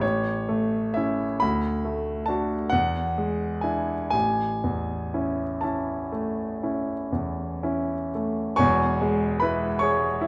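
Serene and dreamy, this brief cut from a longer romantic nocturne features a solo grand piano, clear and intimate, drifting in an unhurried 9/8 with generous rubato over chords moving from A through D and E7 back to A. The piano sits up front with a natural tone and audible action noise, framed by a dark production and the wet reverb of a recital hall. At 8.6 seconds the music shifts into a new section resting on E before the cut ends at 10.3 seconds.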